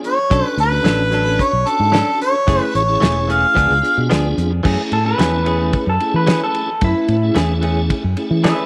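Set in a small room with moderate spring reverb, this mournful, soulful straight-eighth soul blues excerpt in F# minor moves at 111 BPM over a damped 70s drum kit with dark cymbals, a fat snare and a tight kick, a round fingered electric bass, and a piping tonewheel organ with key click, light overdrive, chorus vibrato and a slow rotary speaker, while a bright, twangy direct-recorded clean guitar adds stabs through tape echo and a vibrato-laden, overdriven harmonica carries the melody until 4.1 seconds, after which a clean electric guitar solo takes over at 4.6 seconds and a slightly broken-up, lo-fi guitar through a small old amp joins with a second line at 4.9 seconds.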